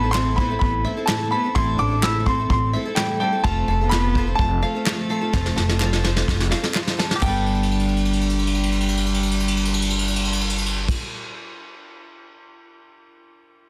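A straight 4/4 pulse at 127 BPM drives this uplifting, anthemic indie folk passage in G mixolydian, cut from a longer piece and built on a building arrangement that moves through Am and F before settling on Gadd9 at 7.2 seconds. A vintage brush drum kit sits up front with a punchy kick, a medium-tuned snare carrying soft clipping, ride and crash cymbals and a rolled-off top, playing fills from 5.3 to 7.2 seconds and again from 7.5 to 10.9 seconds and running on until 12.5 seconds, while crisp group handclaps add a human edge in the small room. Pizzicato upright bass, woody and up front, anchors the low end as a picked twelve-string acoustic guitar, dark yet shimmering with octave doubling and audible finger squeak, fills in the accompaniment. An upright piano carries the melody high in its register, joined by a bowed cello with a nasal, reedy gut-string tone and light vibrato in a period style, and a twangy, percussive banjo played with fingerpicks sits in the background with its arpeggios fed through analog delay. 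Light reverb and small room ambience surround the parts, and the master is dense and heavily limited in a modern way.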